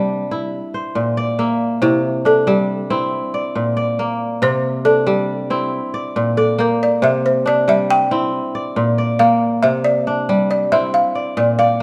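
A moderate recital hall reverb gives this excerpt of West African string and xylophone music a gently spacious air, while the kora sits up front. The mood is joyful and hypnotic, carried by a straight 12/8 feel. A fingerpicked acoustic kora opens the excerpt alone, spinning crisp, ringing arpeggios that reach from its low register up through the middle. At 1.8 s the balafon enters and takes a solo melody through to the end at 11.8 s, its woody, dry tone rounded by soft rubber mallets. Beneath it, the harmony rocks steadily between C and Bb, feeding the music's trance-like pull.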